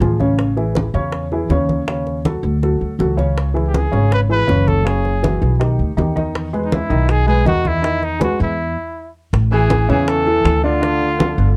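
A present, vibrato-tinged trumpet enters at 3.7 seconds over a worn, intimate baby grand piano, woody pizzicato upright bass, tight high-tuned bongos and ringing low congas in this sunny, sophisticated Afro-Cuban jazz fragment, with a brief stop before a distant, roomy tenor saxophone slips in at 9.5 seconds under a dark, lightly reverberant sheen.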